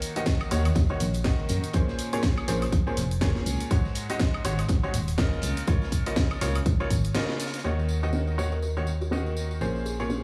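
A lightly reverberant small-room sound frames this bittersweet, soulful piano house at 122 BPM in Eb dorian with a swung sixteenth feel, where a brilliant, worn grand piano riff pumps with sidechain and digital delay over a round, dark FM bass and a punchy, tape-warm electronic kick, while a low-pass-filtered house kit with cracking snare, a faint background tambourine and a very quiet, gritty breakbeat kit that drops out at 7.6 s after a short break fill out the groove, before a woody, hollow-toned kalimba enters at 8.5 s in the background with its own delay.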